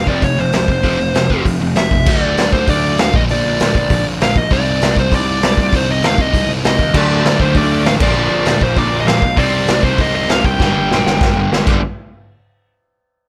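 Angry and aggressive, this punk rock excerpt in G minor charges at 196 BPM, opening with a dark, smooth overdriven lead guitar solo over F before the chords move through D, Bb, C minor and G minor. Two overdriven rhythm guitars sit in the background, one sludgy and warm, the other a bright cranked stack that drops out between 2.1 and 6.9 seconds, while a growly fuzz bass drives underneath. Up front, a raw garage drum kit with a punchy kick and a gritty, saturated small-room sound closes with a fill from 10.6 seconds, in a dry mix.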